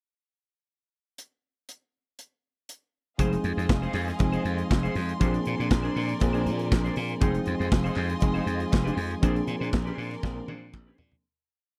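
A growly, punchy slap bass drives this short, danceable disco piece with octave lines and slides, entering at 3.2 seconds after a pickup bar carried by an airy, polished drum kit playing a four-on-the-floor beat with tight kick and sixteenth-note hats. Choppy, clean sixteenth-note picking from a hollow-body electric guitar and push-chord rhythms with grace notes from a worn, slightly out-of-tune tine electric piano fill the groove over Fm7 and Bb9, while a distant, biting string section holds a vibrato pad and very quiet, crisp vintage handclaps mark the backbeat. The dry, close 1970s-style sound fades out over the final two seconds, with the drums playing a closing fill in the last second.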